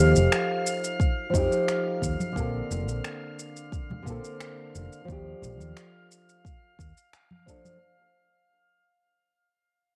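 Sunset chillout at 88 BPM in a straight 4/4, relaxed and warm, this short excerpt fades out across its whole length while the chords move from F9 to Bbmaj9 at 2.4 seconds and Ebmaj9#11 at 5.1 seconds. A dark, thumb-plucked nylon-string guitar with cassette tape colour and analog delay sits up front beside a foam-muted fingered electric bass with tube saturation, while a glassy, drifting harmonics texture with chorus and slow-attack sine tones hovers above. An electronic shaker and finger snaps come in at 0.2 seconds, a deep, tape-softened kick at 1.0 seconds and bright, close congas at 2.2 seconds, all within a wet spring reverb and small room that give the homemade cassette recording its hazy intimacy.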